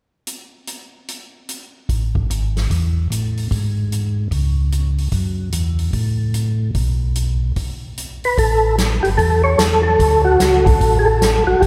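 A swinging big-band drum kit opens this soulful soul jazz organ trio excerpt, its hi-hat, medium-tuned snare and boomy kick sounding natural in a big room. At 1.9 seconds a mellow, dark tonewheel organ takes the bass line through a slow rotary speaker with audible key click, moving over chords such as F#m7, and a brief break arrives at 7.6 seconds. A round, percussive second organ with second harmonic percussion and chorus vibrato enters up front with the melody at 8.2 seconds, all of it washed in a long cathedral reverb.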